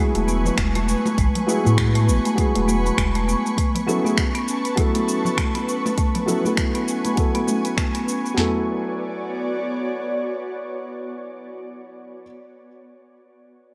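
Warm and earthy, this short cut from a longer organic downtempo piece sits at 100 BPM in 4/4 with a gentle swung sixteenth feel in B dorian. A felt-muted upright piano plays soft, intimate accompaniment through a low-pass filter and digital delay, while an ethereal, airy pad of detuned sawtooth and triangle voices holds slow-blooming chords through ensemble chorus and its own reverb, both breathing with sidechain pumping. A marimba with medium hard mallets on padauk bars adds woody, dark arpeggios, also filtered and delayed, and both marimba and piano carry a filter sweep from the start until 8.4 seconds. The electronic afro-pop kit brings a deep kick, sharp snare and toms up front, with snaps, hats and shaker alongside, while vintage-sounding congas played with soft hands sit in the background and a round, mellow sine sub bass pulses up front until 3.4 seconds. The harmony moves from Amaj9 to Bsus2 and settles on Bm9 at 8.4 seconds, where the drums drop away and the piano and pad linger into a lush hall reverb.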